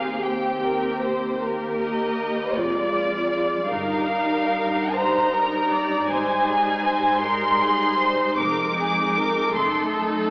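A violin section carries the yearning melody up front, its light vibrato and smooth, even tone high above the rest in this solemn, slow romantic movement for string orchestra, moving in a rubato 6/8 at 52 beats per minute. Beneath it a second violin section sings a focused, lush line, while a rich viola section fills in the accompaniment with a smooth, steady glow. A close, expressive cello section holds the bass with soft attacks, and from 2.6 seconds a double bass section joins quietly in the background, sliding between notes with portamento. The harmony drifts from C minor through diminished colours to an Abmaj7 and Fm7 before ending on an unresolved F#dim7, fitting a fragment cut from a longer piece. A concert hall reverb with a long tail surrounds the strings, yet the whole is filtered through a thin AM radio sound that gives it a distant, old-broadcast character.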